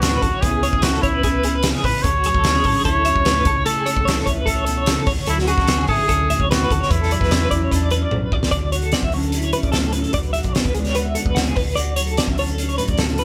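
A warm, up-front trumpet carries a wistful, playful melody until 8.1 seconds over a mellow, dark guitar with phaser, a clean twelve-string electric guitar playing tremolo-tinged arpeggios, a round hollow-body bass and a loose indie drum kit with a fat snare and punchy kick in this math rock and midwest emo excerpt at 148 BPM in D lydian, where a drum fill at 8.1 seconds leads the band, playing live in one room with light reverb, into a new section that runs to 13.2 seconds.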